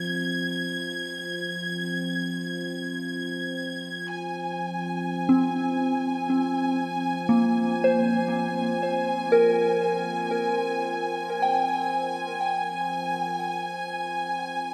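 This reflective, serene ambient excerpt in F minor moves in free time, opening at 0.0 s on an Fmadd9 chord. An evolving analog drone of sawtooth and pulse-wave tones with pulse-width modulation sits low with a slow attack and chorus, fading out across the whole passage. Above it, a rich chamber violin section holds a smooth, even bowed texture with vibrato, placed up front in the high register. At 5.3 s a soft FM synth bell enters with gentle, pure arpeggios, its fast attack and long decaying release touched by chorus and delay, and it is the most prominent part in the mix. A cathedral reverb with a 5.1-second tail bathes the piece in a spacious, wet ambience, so the sustained sounds blur into a calm, suspended haze.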